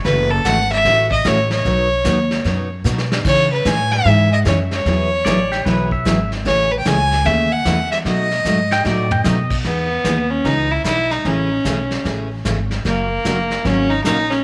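Western swing country at 150 BPM in E major, cheerful and swinging, built on a bright, full-bodied picked acoustic guitar, a woody, thumpy pizzicato upright bass, and a vintage brush drum kit with dark cymbals, a punchy kick and a rolled-off top, with drum fills near 2.9 and 8.5 seconds. Up front, a rich, earthy bowed fiddle with light vibrato and tape echo carries the melody, while a clean, compressed pedal steel guitar with fingerpicks, slide and volume swells adds brief second lines around 5.2 and 8.7 seconds. Light reverb and small room ambience frame this short cut from a longer piece, which moves through chords such as F#m7, Amaj7 and Emaj7.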